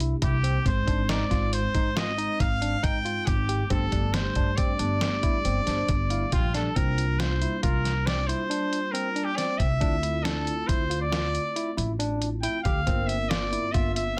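A driving, intricate progressive band piece in 7/4 at 138 BPM and C mixolydian opens with a bell-like tine electric piano comping through a phaser, a barky second electric piano playing arpeggios, woody pizzicato upright bass, and a muffled, thumpy, pitched-down sampler-style drum kit up front, with a tine electric piano fill arriving at 5.4 seconds, while a bright, roomy classical-style trumpet carries the solo melody from 0.2 seconds as the harmony moves from C7 toward a new section at 6.8 seconds over C7sus4, Dm9 and Gm7, all under light reverb and a dense, heavily limited modern master in this cut from a longer piece.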